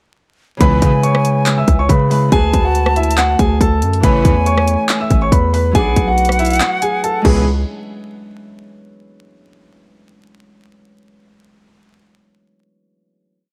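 Vinyl crackle and a light reverb frame this brooding, menacing trap piece, built on a half-time beat from an overdriven, up-front electronic kit: a hard-clipped kick, bright hi-hats with fast rolls, handclaps, rim clicks and crash cymbal, while a punchy 808-style bass holds long, heavy sub-bass notes that follow the kick and slide in pitch. Over it loops a hook that sounds sampled, with a clear, intimate grand piano melody doubled in octaves with audible action noise, a hollow, airy concert flute playing a sparse counter-melody with vibrato and delay, and a fingerpicked Celtic harp ringing out held chords in open voicing. A fat, detuned sawtooth polysynth with chorus adds short stabs in the background, the kick drops out at 6.6 seconds, and from 7.5 seconds a final hit closes the piece.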